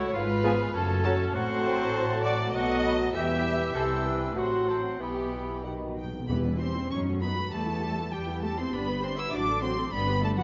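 This urgent, dramatic cut from a quick classical-period movement for symphony orchestra in 2/4 moves with a rubato feel. It opens with a muted studio violin section and a clear oboe on second lines, over muted cellos and double basses, while a silver, distant flute adds a further line and a dark French horn section holds sustained chords in the background. A muted chamber violin section then takes the melody up high, with a muted studio viola section in accompaniment and a clarinet line and a vintage-toned bassoon set back in the mix. The strings are veiled con sordino with vibrato, the upper strings have soft attacks, and the studio violins bring a lush body. A timpani fill on hard mallets with calf heads arrives at 5.7 seconds, the woodwinds and horns are gone by 6.0 seconds, and the strings carry on into the second section from 6.3 seconds. A reverberant scoring stage surrounds the orchestra, and the rolled-off top end gives it a rounded, shadowy finish.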